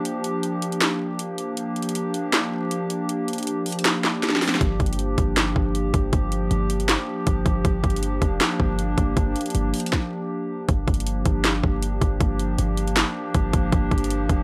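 Dark and eerie, this trap-leaning hip hop excerpt moves at 158 BPM in a half-time feel, sitting in G minor on a single Gm7 chord. A hollow, flute-like pad holds sustained chords up front from the opening, its detuned, mellow tone softened by chorus. The electronic drum kit enters almost immediately with a hard-clipped kick, sharp snare, handclaps and metallic hi-hats, and a drum fill leads out of the opening break at 4.6 seconds. There the hard-hitting 808-style bass arrives, punchy and heavy with a fast attack, decaying body, noise layer and tube saturation. A stop around 9.9 seconds clears space before a new section begins at 10.7 seconds. The sound is dry and gritty, with little reverb, and the clip ends mid-flow as part of a longer piece.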